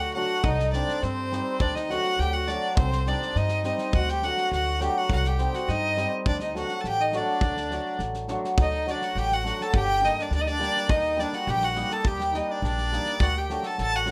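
A straight 2/4 pulse at 104 BPM drives this fiery, restless Balkan wedding-band piece in D phrygian dominant, cut from a longer performance. A loose indie drum kit with punchy kick and medium-tuned snare joins at 0.4 seconds beside a woody pizzicato upright bass on steel strings. Up front, a single bowed violin carries the melody with a biting, intense edge, light vibrato and a smooth top. A reedy accordion with slow beating plays a second line, and a hammered dulcimer adds shimmering, ringing accompaniment. The rough home demo mix sits in moderate studio reverb, and the harmony alternates between Cm and D before shifting to Gm and Eb around 9.7 seconds and returning to D at 13.2 seconds.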